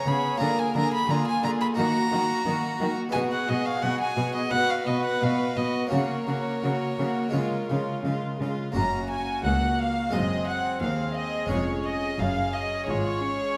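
A festive, lively baroque-style concerto movement in F# major at 87 BPM, this excerpt from a longer piece sets a solo violin up front, its nasal, airy-bowed gut-string tone leading over two violin sections sharing the melody and a second line with light vibrato. A dark viola section, a distant cello section and a full, plucked harpsichord in the background fill out the accompaniment and bass, while a rich double bass section joins at 8.8 s as the opening material returns. Period-style reedy string timbres bloom in a wet recital hall reverb.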